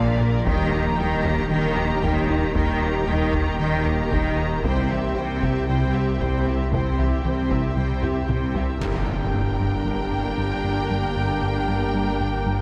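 A rubbery, nasal square-wave bass riff drives this relentless, tense hybrid orchestral and electronic film cue in G minor at 115 BPM, over a deep saturated sub bass, a swarming granular drone and a squelchy, phaser-coloured blip pluck playing arpeggios. Lush symphonic strings surround it, with violins on a focused second line, violas in the background and distant cellos and very quiet double basses holding the bass, while a close, dry taiko ensemble plays quietly from 0.5 seconds and adds a fill just before 8.8 seconds. At 8.8 seconds the harmony turns to G minor as an expressive studio violin melody enters with mellow French horns, dark trombones and a background electronic impact, all in a moderate scoring-stage reverb, in this excerpt from a longer piece.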